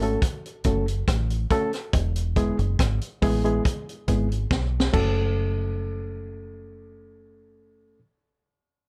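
A reedy, slightly out-of-tune electric piano plays stabs with spring reverb over a round, foam-muted fingered bass and a punchy, dark-cymbaled vintage drum kit in this laid-back, serious roots reggae excerpt at 70 BPM in F# minor. The harmony moves from F#m to E and back to F#m at 4.9 seconds, while the drums, with their high-tuned snare and rolled-off top, play a fill from 4.5 seconds and stop at 5.1. The bass and worn-sounding piano carry on up front in a dry, close sound.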